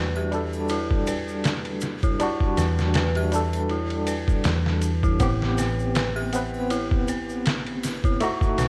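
Through a worn, warbling cassette-tape haze with light reverb, this hypnotic, melancholic trip hop fragment sets a barky, overdriven tine electric piano through a combo amp and a round, dark hollow-body bass under eerie, inharmonic FM synth-bell arpeggios with chorus and dub echo, while a gritty, pitched-down sampler-style drum kit with a thumpy kick and ride sits up front, a faint triangle and tube shaker hover in the background, and the harmony moves from Em7 to Am7 at 5.2 seconds.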